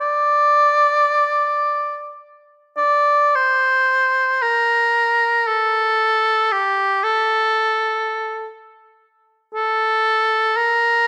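A lone oboe opens this short passage from a longer piece, a Caucasian folk lament in free time. Its bright, classical-style tone sits up front, carrying a light vibrato as it sings within a narrow range from G4 to D5. The mood is solemn and longing, with the unmeasured pacing giving the line a grieving quality. At 3.4 seconds the melody moves into a second section, which carries on until the passage ends at 11.1 seconds. A moderate reverb, like that of a large scoring stage, surrounds the single voice with a spacious tail of about 2.0 seconds.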